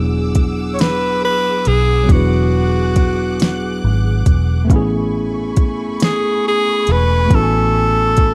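A worn, slightly out-of-tune tine electric piano opens this intimate, slow six-eight R&B fragment, joined at once by a lush, woody string section with vibrato and a dark, round, foam-muted fingered bass, with the keys and strings bathed in plate reverb. Electronic drums with a soft kick, a fat snare and smooth hats arrive up front at 0.3 s, and a close-miked, breathy tenor saxophone takes the solo melody from 0.7 s with scooped notes in a jazz style. The harmony moves from E9 to Amaj9 at 4.7 s, all under a light room reverb.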